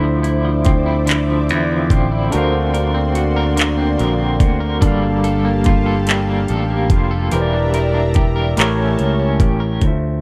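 Sultry and late-night, this slow R&B groove moves in 6/8 at 48 BPM counted in dotted quarters, with a straight feel in D minor. A picked electric bass sits up front with a bright, growly, amped tone, while a smooth electronic drum kit, also up front, sets a knocking kick, metallic hi-hats and handclaps from 0.2 to 10.0 seconds. A barky tine electric piano, lightly overdriven through a combo amp, carries the accompaniment, and an electric guitar at the edge of break-up adds a twangy, fingered second line treated with tremolo. Alongside them, a lush unison pad built from thick, nasal, detuned sawtooth tones holds sustained chords with a slow attack and long release, colored by chorus, until 9.8 seconds. The harmony travels from Dm9 through D7alt, Gm9 and Em7b5 to A7b9, all within a digital ambience in this short cut from a longer piece.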